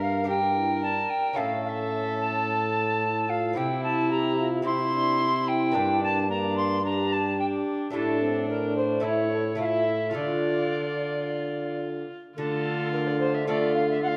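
All five parts sound together from the first moment of this excerpt from a renaissance-style consort dance in D minor, moving at 109 BPM in a straight 4/4 with a courtly, solemn bearing. An alto recorder carries the melody up front, its pure, woody tone shaped by a soft attack and expressive vibrato, though it keeps a slightly distant quality. Beneath it a single bowed viola plays a second line with a dark, nasal gut-string sound, reedy yet smooth on top. A close-miked trombone, warm with light vibrato, holds the bass, while a second, mellow trombone and a bright, delicate fingerpicked lute with doubled strings fill in the accompaniment from the background. The harmony moves from G minor through A and C, returns to G minor, and passes through a suspended A chord before settling on D minor at 10.2 seconds, with the ensemble set in a wet recital hall reverb.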